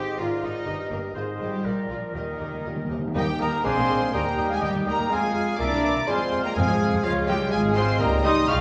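A spirited, cheerful classical-period orchestral movement in Eb major, this brisk 2/4 passage at 123 BPM, cut from a longer piece, sets a floating, pure violin section on the melody above a very quiet, intimate second violin section, a dark clarinet, an airy silver flute with expressive vibrato, and a distant oboe. Beneath them, a shadowy bassoon and a faraway viola section fill in the accompaniment, a roomy French horn section holds sustained chords, a smooth-topped trumpet adds stabs, and warm cello and double bass sections anchor the bass. Round, soft-mallet timpani on calf heads enter at 2.1 s with a fill that runs to 3.2 s and play on until 3.6 s, all within a wet recital-hall reverb.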